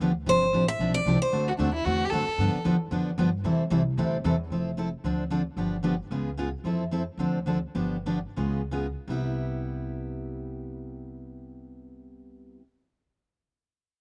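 Dry and close, with the open air of an outdoor setting, this lively, charming snippet of jazz manouche swings in 4/4 at 157-227 BPM in C major, easing into a slowdown from 6.6 to 9.1 seconds. A bright, up-front picked steel-string guitar carries the accompaniment over a dark, thumpy gut-string upright bass played pizzicato, while a full-bodied jumbo steel-string guitar with audible finger squeak states a brief high melody near the start. An intimate, airy violin then adds a soft-attack bowed second line with light vibrato and a slapback echo, and the chords move from G7sus4 through Db7 turnarounds to settle on Cmaj7 at 9.1 seconds.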